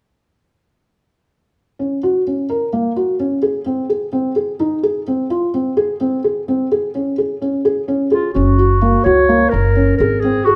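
Hopeful and playful, this short contemporary instrumental excerpt in an uneven 7/8 opens at 1.8 seconds with a boxy, felt-muted upright piano playing soft arpeggios up front in a recital hall, joined by a vintage clarinet melody at 8.1 seconds and a woody pizzicato upright bass at 8.4 seconds.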